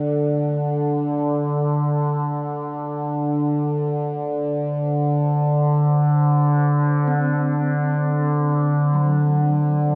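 This ominous, vast ambient excerpt opens on a resonant, overtone-sweeping drone placed up front, its sawtooth and sine tones shifting through moving overtones with a slow attack and long release, treated with chorus and built-in reverb. Beneath it, a deep, moody pad of sustained chords fades in across the full 10 seconds, its full-bodied unison sawtooth and sine layers and sub octave sitting mellow in the background, also carrying chorus and built-in reverb. Very quiet arpeggios from a gamelan-type bronze metallophone ring through the haze, struck with a wooden mallet, its paired tuning producing shimmering beats in a metallic, mid-forward voice. A huge, wet reverb with an 8.1-second decay stretches the space into something cavernous. Worn, warbling old cassette tape adds a wavering pitch drift that lends the whole a decayed, unsettled quality.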